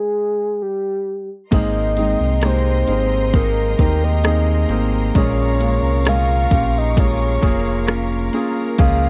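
This is a tender, emotional pop ballad in Ab major, moving at a slow 66 BPM in a straight 4/4, and this short passage is cut from a longer piece. A soft, round synth lead, layered in octaves with a dark, detuned edge and chorus plus slapback echo, carries the melody alone for the first 1.5 seconds. The rest of the band then enters together: a polished grand piano in accompaniment, a lush bowed string section holding sustained chords, and a bright fingerpicked steel-string acoustic guitar playing arpeggios in the background with its own slapback echo. Underneath, a deep sine sub bass with an octave layer sits up front alongside a punchy, tape-tinged electronic pop kit of kick, hi-hat, rim click and crash cymbal. The harmony rests on Abadd9 before shifting to Bbm7 at 5.2 seconds. The sound is dry and close, in the manner of a 1970s studio recording, with little reverb.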